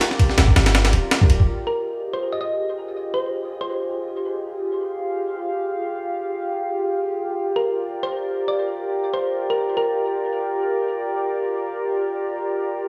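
A warbling, lo-fi tape-like pad opens this atmospheric, nostalgic drum and bass excerpt at 163 BPM in F dorian, together with a gritty, compressed breakbeat kit (thumpy kick, high-tuned snare, ride), while a deep, boomy 808-style bass enters at 0.4 seconds, all over Gm7, before kit and bass both stop at 1.5 seconds. The detuned, chorused pad then carries Fm9 under a filter sweep while a round, tine-like FM thumb-piano pluck with cassette-tape colour and dub echo plays a gentle melody in two passages, the second from 7.6 seconds, just after the harmony returns to Gm7. A moderate echo-chamber reverb surrounds the music.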